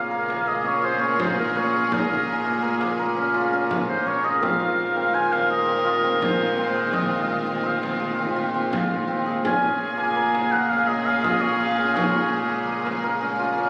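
Contemporary instrumental chamber music in 7/4 at 167 BPM, restless and pensive in Bb minor, this short excerpt has an oboe with light vibrato carrying the melody over a mellow, distant clarinet second line, while a shimmering, ringing hammered dulcimer sits up front with arpeggios. A lush, focused string section holds sustained chords and a single bowed cello anchors the bass with a pure, floating sul tasto tone, as a small, bright frame drum, heard from afar in a large room, joins at 0.3 s. The harmony moves from Bbm7 to Fm7/Bb and back, and the sound carries a concert hall reverb blended with club reverb and compression, captured on a phone in the room.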